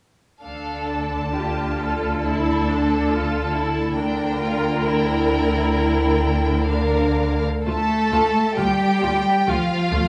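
At 0.4 s a chamber string orchestra enters together on its opening chord, beginning a slow, melancholic and elegiac romantic movement that is cut from a longer piece. The violins carry the melody high in their range with a rich, focused tone and a smooth top, while a second violin line moves beneath them. Violas fill in the accompaniment with an even, somewhat distant sound, and the cellos and double basses anchor the bass with warm, expressive vibrato, the basses having a soft attack. The playing is bowed throughout in a flexible rubato, and a new section begins at 7.7 s before the strings fall away at 10.1 s. A wet recital hall reverb and a small room ambience give the ensemble a gentle halo of space.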